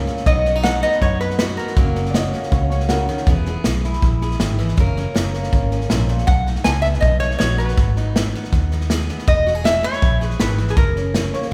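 A moderate, hall-like reverb surrounds this honky-tonk and classic country excerpt, giving it the airy space of a church or concert hall. The mood is heartfelt and easygoing, carried by a straight, steady feel from a natural country drum kit with a punchy kick and a medium-tuned snare sitting up front alongside the hi-hat. A full-bodied dreadnought acoustic guitar, picked, fills in the accompaniment above a dark, round, foam-muted vintage electric bass played with the fingers. The lead belongs to a bright, nasal lap resonator guitar, played with slide and fingerpicks for a metallic edge. It steps back around 2.3 seconds and returns at 6.3 seconds. Just as it steps back, an intimate upright piano with woody tone, short sustain and audible action noise offers a brief second line starting at 2.1 seconds, over a gentle progression that moves through B, F#, E and G#m.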